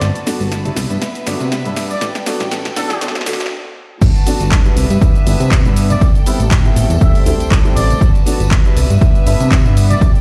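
Funky and sunny, this 10-second excerpt of filtered disco house in G major at 120 BPM with a light 16th-note swing opens with a build-up of drum fill and filter sweep over muted, veiled trumpets, biting violin chords, a fat detuned sawtooth bass, bright tambourine and congas, and a worn baby grand piano with phaser and 12-bit grit, all pumping under sidechain, before a stop at 3.5 seconds gives way at 4.0 seconds to a drop where a punchy, tape-warm electronic kick joins the house kit's claps, hats, shaker, snare and crash, all heard through a stone room's reverb on a big sound system.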